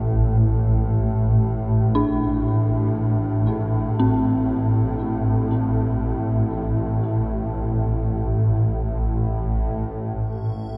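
Drifting in free time, this dark, cavernous ambient drone excerpt rests on an up-front swarming drone in the low register, tense and evolving with a granular, ring-modulated sawtooth edge and its own reverb. Over it, an eerie, inharmonic synth bell traces mellow FM arpeggios through chorus and a diffuse ambient delay, while the harmony moves from D5/A to A5 at 10.2 seconds. An icy, crystalline glass pad slips in faintly in the background at 10.3 seconds, all of it sitting in a vast, echoing cathedral-like space with a long reverb tail.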